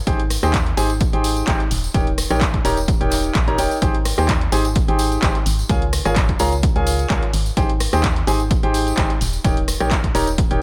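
Everything enters together at 0.1 seconds in this uplifting piano house excerpt, led by a clear, woody upright piano playing a riff up front with audible action noise, a digital delay and sidechain pumping that makes it breathe with the beat. Beneath it, an organ-like FM bass with a hollow, dark tone and fast, decaying attack adds tube saturation and the same pumping motion. A punchy electronic kick, re-recorded in a large room, drives the 128 BPM 4/4 groove. An analog drum machine adds handclaps, hi-hat and rim click with a gentle 16th-note swing. An acoustic tambourine sits in the background with a small-room character. In Ab major, the euphoric harmony moves through Abmaj7, Eb7 and Db6 in a digital ambience until the cut at 10.6 seconds.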